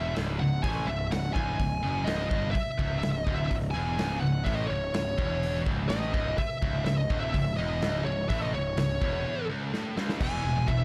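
A straight 4/4 pulse at 125 BPM drives this heavy, epic heavy metal excerpt in C# minor, where a big rock drum kit with a punchy kick, medium-tuned snare, crash and hi-hat comes in at 0.2 seconds beneath a scooped, double-tracked high-gain guitar riff and a growly, fuzz-laden picked bass. Up front, a dark, distorted lead guitar carries the melody with delay, sitting over harmony that holds on C#m before moving to E at 10.2 seconds. A break begins at 9.3 seconds, with a drum fill following at 9.7 seconds, and the whole is framed in a dusky production with light reverb.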